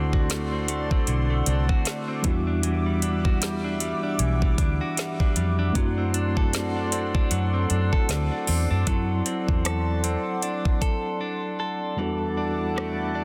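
A swung 77 BPM groove from a smooth, up-front electronic drum kit with knocking kick, woody snare and metallic hats anchors this longing, sensual contemporary R&B fragment, where a round, foam-muted electric bass (ending at 10.2 seconds), a mellow tine electric piano that takes a solo from 8.9 seconds, a clean, direct-recorded guitar playing picked arpeggios through tape echo and a shimmering, chorused pulse-width pad move through D7 and Em9 to an Em11, with a brief break before the hi-hats drop out at 12.0 seconds, all set in light reverb under a dense, heavily limited master.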